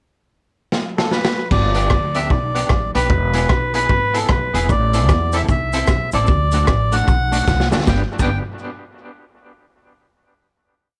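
A swung ska beat drives this short, cheerful piece, with a raw garage drum kit setting the side-stick backbeat around a punchy kick, hi-hat, rim click and crash, its saturated, gritty sound treated with tape echo and a rolled-off top. After a drum fill through the pickup bar, a reedy, breathy melodica takes the lead from 1.0 seconds with hook-like motifs. An up-front upright bass joins at 1.5 seconds with a woody, thumpy walking line and slides. A clean electric guitar then chops the off-beats with tremolo and tape echo beneath it, cycling through G, E, A minor and D. A grainy cabasa slips in quietly in the background from 4.7 seconds, and a second drum fill leads the joyful tune to a closing G chord in a pumping small room.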